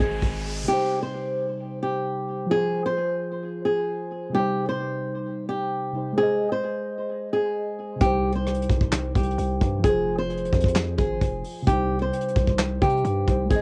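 A brief electronic riser opens this menacing, eerie half-time trap excerpt alongside a fingerpicked flamenco guitar melody with audible finger squeak and tape echo, set over muted, dark felt-like synth keys treated with chorus, phaser and cassette tape coloring. After a short opening hit, the distorted, heavy 808-style bass and a soft brush kit of tight kick, snare, rim click, hi-hat and handclaps fall away, leaving guitar and keys alone until both return at 8.0 seconds. The kit and guitar sit up front in a small, lightly reverberant room, and the whole piece carries the intimate character of a home cassette recording.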